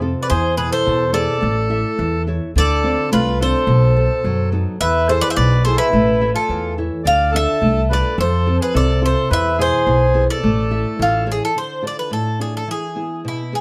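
Greek folk music from a bouzouki band, brooding and bittersweet, moving at 107 BPM in a straight 2/4 and set in D Dorian with a raised fourth, in an excerpt cut from a longer piece. The Greek bouzouki carries the melody from 0.2 seconds, its picked double strings sounding metallic, with some octave-doubled courses, sitting up front in the mix. Beside it, a reedy, airy accordion plays a second line until 11.2 seconds, while a small, fingerpicked nylon-string guitar provides accompaniment throughout. The pizzicato upright bass is woody and growly, strung with steel and placed up front, holding the low end from the start until 11.4 seconds. The harmony circles through E, A, Dm7, B7, Dm and F before a closing passage from 11.6 seconds, all set in a moderate studio reverb.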